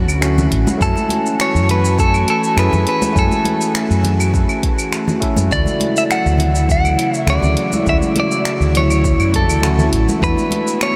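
A straight 4/4 groove at 102 BPM comes from a tape-warm deep house kit of claves, finger snaps, hi-hat and shaker over a deep, layered electronic kick, with ringing congas sitting close and dry in the background and a dark, round fretless electric bass underneath. In D lydian, a bright, barky electric piano, overdriven through a combo amp with tape echo, shares the Dmaj9 and F#m9 harmony with an airy, breathy, detuned pad that fades in slowly under chorus and shimmer reverb, before the chords turn to E7sus4 at 10.2 seconds. From 0.8 seconds a clean, compressed electric guitar carries the melody up front with harmonic tremolo and diffuse ambient delay, all set in a smooth, blissful sunset chillout mix soaked in huge, dreamy reverb.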